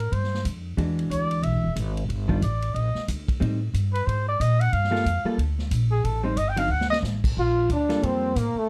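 This excerpt opens with a breathy, mellow trumpet soloing over upright bass and a swinging drum kit, a late-night small-group swing and bop feel in G minor at 182 BPM. The woody, growly pizzicato bass sits up front, while the kit offers a punchy kick, a medium-tuned snare, hi-hat, ride and crash in a natural studio-room sound. From 0.8 seconds a dark, clean hollow-body electric guitar adds picked, compressed chords that move through harmonies such as Ebmaj7, Am7b5 and Gm9. A short drum fill at 6.7 seconds leads to a new section at 7.4 seconds, where a clear, forceful trombone takes the melody with light vibrato and a touch of plate reverb. The production is dark and warm with little reverb overall; the trumpet's scooped phrases sound distant and roomy, while the trombone's punch stays close and intimate.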